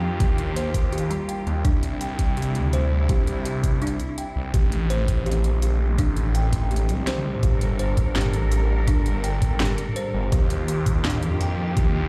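A smooth, bowed cello section holds sustained chords that pump under the sidechain over a thick, swirling detuned saw bass with phaser and tube saturation, opening this dark, spacious half-time drum and bass piece in which a woody, ringing kalimba plays filtered, delayed arpeggios, an overdriven kit brings a cracking snare and bright hats beside a knocking electronic kick, and at 6.9 seconds a faint electronic swell sounds with a drum fill as the kick drops out at 7.1 seconds, within the reverberant ambience of a large, bare room.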